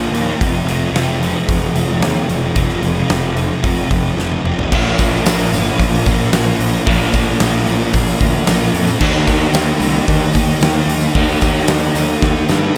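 Shoegaze-tinged dream pop rock at 112 BPM in Bb major, hazy and wistful, this clip moves from F to Bb and Eb as a thick, distorted fuzz guitar with ensemble chorus sits up front over a crunchy overdriven guitar in the background, its riff trailing reverse reverb. A punchy, overdriven fuzz bass anchors the low end beneath a huge acoustic arena kit with bright cymbals, a fat snare and a punchy kick ringing in a hall, with drum fills at 4.2 and 12.2 seconds. A jingly tambourine joins very quietly at 5.0 seconds, all set in a small room ambience.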